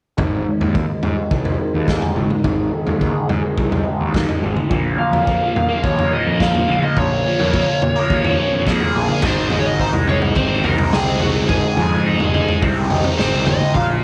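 A double-tracked fuzz guitar sits up front with a bright, compressed riff, colored by distortion, phaser and a low-pass filter whose sweep runs through the opening stretch until 9.2 seconds. This short excerpt of hypnotic, kaleidoscopic psychedelic rock moves at 106 BPM in a straight 4/4, its harmony shifting from Ab5 to Bb minor and landing on Ab. A raw garage drum kit, also up front, gives a punchy kick, a medium-tuned snare, crashes and toms with a dark, rolled-off top. Beneath it, an overdriven electric bass with a picked fuzz tone and transformer saturation sits in the background. From 0.5 seconds a fuzz lead guitar carries the melody in a warm, compressed, distorted voice, trailed by tape echo. Light reverb and a small room ambience hold the parts together.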